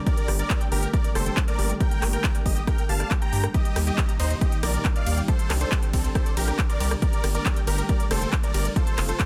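A huge, detuned supersaw carries the melody of this euphoric yet bittersweet uplifting trance excerpt at 138 BPM in G minor, its thick, compressed tone pumping against the kick and trailing a dub echo. Beneath it, a gritty, saturated synth bass with oscillator sync drives the low end from 0.3 seconds, while a punchy electronic kick sits up front with a techno kit of handclaps, smooth hi-hats, ride cymbal and rim clicks, both re-recorded in a small room. In the background, a detuned pluck spins arpeggios through a tape echo, and a vintage, warbling pad holds sustained chords with a slow attack and chorus. The harmony moves from Gmadd9 to Eb, then Csus2, and back to Gmadd9 at 7.0 seconds. The dense, heavily limited modern master sits in a digital ambience with a faint mains hum.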